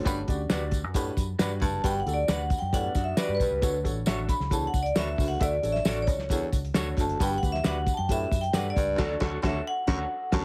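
A woody, slightly detuned upright piano and a bright, twangy electric guitar riff through a small old amp with spring reverb open this uplifting, danceable slice of uptempo 1960s-style soul at 134 BPM in D major. Almost at once a dry, dark drum kit with a fat snare, tight kick and dark cymbals sits up front. A round, punchy, foam-muted electric bass with tube saturation, a mellow, breathy baritone saxophone riff with subtone, scooped notes and vibrato, a jingly tambourine, and a second, lo-fi guitar playing background stabs join the drums. At 1.6 s a hard-mallet vibraphone enters with the melody, metallic and ringing with medium motor vibrato in a boxy small room, while the harmony moves between Gmaj7 and Dmaj7. The twangy guitar riff drops out at 3.6 s and returns at 9.0 s for a band accent. The whole fragment, cut from a longer piece, carries light reverb and a heavily compressed, radio-like sound.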